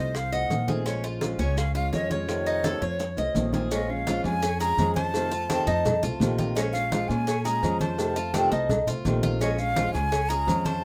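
A straight 4/4 groove at 168 BPM drives this sultry, danceable excerpt of Cuban son and guajira in Bb minor, with low-tuned, damped congas played by soft hands, tight, saturated bongos and cowbell set back in the mix, and grainy maracas, all underpinned by a thumpy, woody upright bass placed up front. A dark, fingerpicked flamenco guitar with audible finger squeak and a metallic, double-strung Cuban tres spinning arpeggios circle between Bbm7 and F7 chords, while a breathy jazz flute carries the melody with soft attack, lifted highs and an unsteady vibrato. A drum fill from 2.6 to 3.7 seconds leads into the second section, all in a light reverb.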